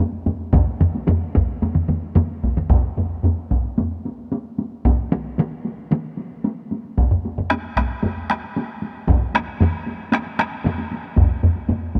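Japanese traditional taiko drum ensemble music, ceremonial and powerful, in a straight 4/4 that steadily speeds up across this fragment of a longer piece. Layered taiko ensembles played with heavy and hard sticks fill the sound: two sit close, dry and up front, and one sounds from a small room. A solo taiko drum struck with hard sticks rings out in a live room near the front from 0.5 seconds, and the dark production carries light reverb as the music moves into a new section at 2.7 seconds.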